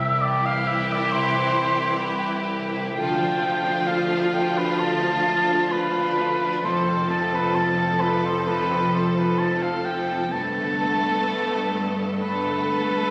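Longing and bittersweet, this cinematic film-score excerpt drifts at a rubato 65 BPM in D dorian, moving through C, Dm, F and Gadd9 over 13.1 seconds. A clear, intense violin section carries the melody from a distance while a mellow cor anglais with light vibrato sings a second line up front, supported by a second violin section in the background and a smooth, even viola section. Underneath, a bright, ringing concert harp plays arpeggios, and a focused chamber cello section and a lush double bass section hold the bass, all set in a moderate scoring-stage reverb captured on a phone in the room.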